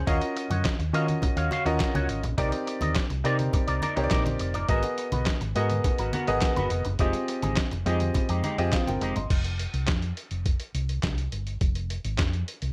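The recording sounds dry, with little reverb, in this short cut from a longer early-eighties boogie funk piece that feels danceable and funky. Up front, a gritty, compressed sampler-style drum kit, pitched down and tape-warm, with a small-room character, pairs a thumpy kick and medium-tuned snare with hi-hat, handclaps and crash cymbal. Beneath it, a dark, round hollow-body short-scale bass, fingered and amped, carries the low end. A clean, twangy electric guitar, picked through an envelope filter and dressed in analog chorus, plays the riff, while an intimate concert grand piano with deep bass and audible action noise sits forward in the accompaniment over minor ninth chords. Low-tuned, thick-skinned congas add acoustic colour from the background until the guitar, piano and congas all drop out around 9.3 seconds, leaving the bass and drums to carry a bare F5 section through to 12.7 seconds.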